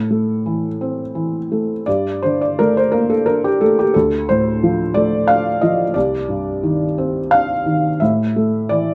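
A light reverb frames this intimate recording, with a felt-muted upright piano sitting up front so that the soft knock of its action is audible. The style is neoclassical minimalist piano, wistful and reflective, moving at 87 BPM in 3/4 with a rubato feel that lets the time breathe. The piano plays solo across the whole 8.9-second excerpt, spanning a range from C2 to F5 with a mellow, hushed tone. Its harmony drifts from Am through Gmadd9, Dm7 and Cmadd9 before settling on an open A5 at 8.0 seconds. Cut from a longer piece, the passage feels like a quiet, private moment of thought.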